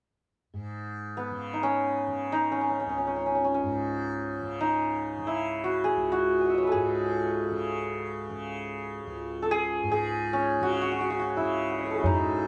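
A hammered santur rings up front with a shimmering, ringing tone, unfolding a longing, introspective Hindustani melody in free time over a softly plucked, buzzing tanpura drone, and a low-tuned tabla joins briefly at 12.0 seconds in this moderately reverberant, live-in-the-room excerpt cut from a longer piece.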